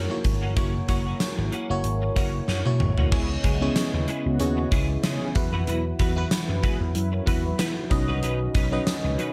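1980s-style pop at 94 BPM with a lightly swung sixteenth feel, nostalgic and uplifting, cut from a longer piece and moving through F#7, C#m7, Esus2 and Badd9. A glassy, bell-like FM electric piano with chorus and phaser sits up front beside a punchy gated drum kit with a fat snare. A round vintage slap bass, a clean, compressed electric guitar riff with ensemble chorus and delay, and a mellow, distant brass ensemble holding sustained chords fill out the arrangement. A drum fill at 2.5 seconds leads into the second section, where dark, detuned sawtooth synth brass stabs with vibrato sit in the background from 3.1 to 7.6 seconds.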